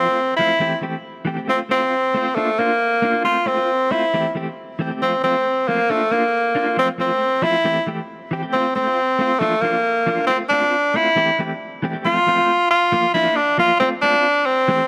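Joyful and warm, this short cut from a longer highlife piece moves in a straight, buoyant 4/4. A bright tenor saxophone carries the melody up front as a solo, its jazz-inflected line shaped by a soft attack and light vibrato in a comfortable middle register. Beneath it, a clean electric guitar picks out the accompaniment at a much lower level, its compressed, warm tone colored by tremolo. The harmony circles through F, C6 and Bb in a cheerful, recurring loop, shifting into a brief new section at 12.1 seconds before the passage closes at 14.9 seconds. A moderate plate reverb with a long tail gives the pair a glowing sense of space.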